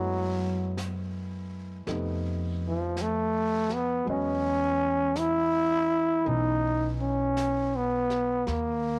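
A raspy, growling trombone sings the melody up front with vibrato and scooped notes over a dark, mellow grand piano in the background and a woody pizzicato upright bass, with a brushed kit and its high-tuned snare slipping in at 0.8 seconds, in this wistful, smoky swung jazz ballad excerpt at 54 BPM that drifts through F#m11, F7#11 and Emaj9 in a light studio reverb before the piano drops out at 8.5 seconds.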